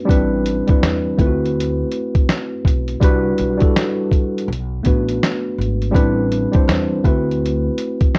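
Wrapped in warbling old-tape pitch drift and light reverb, this nostalgic, reflective lo-fi hip hop excerpt at 82 BPM swings its 16ths beneath a mellow, slightly out-of-tune tine electric piano, dulled by cassette and a low-pass filter, that sits up front on Am11, D13, Cmaj9#11 and Bm7 chords, while a woody pizzicato upright bass and a compressed, pitched-down, muffled sampler-style kit with a thumpy kick, snare, hi-hat and finger snaps fill out the groove.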